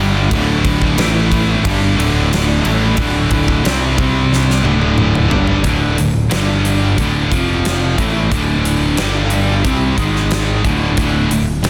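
Hard rock with a swaggering, powerful stance, this straight 4/4 excerpt is built on a riff carried by two up-front guitars: a warm, overdriven one shimmering with harmonic tremolo, and a scooped, high-gain distorted one with a brighter edge. Underneath, a growly, punchy picked electric bass with a direct sound holds down the low end from the first moment. A huge arena drum kit enters at 0.3 seconds with a fat snare, punchy kick, bright cymbals across hi-hat and ride, and toms, playing a fill from 4.3 to 5.6 seconds. That fill leads into a second section at 5.6 seconds, where the power-chord movement grows more restless, touching G5, F5, C5 and G#5 before returning to D5. The whole sits in a small room ambience, with a dense, heavily limited modern master pressing the parts tightly together.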